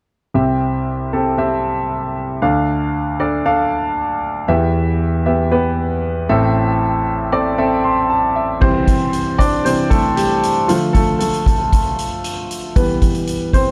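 Uplifting and anthemic, this short cut from a longer piano-driven pop piece moves in a straight 4/4 over chords that run from C through Dm and Em to Am. A clear, open concert grand piano with deep bass sits up front from the start, plays a fill at 7.6 seconds and takes a solo from 8.6 seconds. At that point a soft-mallet drum kit enters with dark cymbals, a boomy kick and hi-hat in a natural hall sound, all under light reverb and a dark production.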